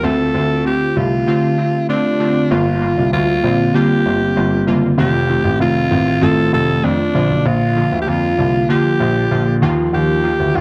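A dry, close 1970s-style studio sound with light reverb frames this glossy, uplifting 1980s-style pop fragment, where a breathy, raspy alto saxophone with vibrato and scooped notes carries the melody over glassy, chorused digital keys with a filter sweep and a warm, natural baby grand piano holding down the bass, as the chords move from Dm7 through Gm7, F7 and Bb to Ebsus2.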